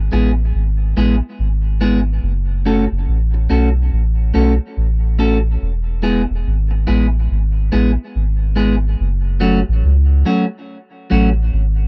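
Roots reggae in F# minor at a laid-back 71 BPM with a swung sixteenth feel, this serious, short cut from a longer piece pairs a deep, round dub sub bass with a bright, twangy clean electric guitar whose picked accompaniment carries a dub echo. Both parts sit up front in a dry, close 1970s-style studio sound, moving through E and F# minor chords before a new section arrives at 9.0 seconds.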